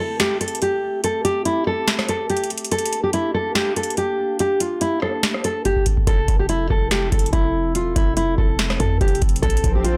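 A fingerpicked nylon-string guitar melody, full-bodied and up front with a low-pass filter, digital delay and audible finger squeaks, opens this melancholic, dark trap-flavored hip hop excerpt at 143 BPM in a half-time feel over a warbling, nostalgic lo-fi pad of chorused sustained chords, while a booming analog drum machine with a deep kick, crisp snare, metallic hats, snaps and rim clicks drives a break that ends in a drum fill before a punchy, heavy 808-style bass enters in the background at 6.1 seconds as the harmony moves from Am7 and Gm to Fmaj7 and Bb, closing with an electronic swell at 9.7 seconds.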